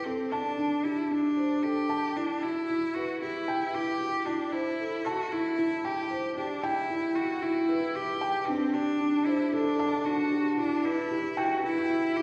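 Cinematic and hypnotic, this 12.2-second electronica build-up, cut from a longer piece, pairs a dark, felt-muted upright piano riff, up front with audible action noise, with a focused, boxy solo bowed cello melody carrying vibrato and digital delay, both playing throughout over cycling chords of D7sus4, Emadd9 and Am7 inside a wet recital hall reverb with small room ambience.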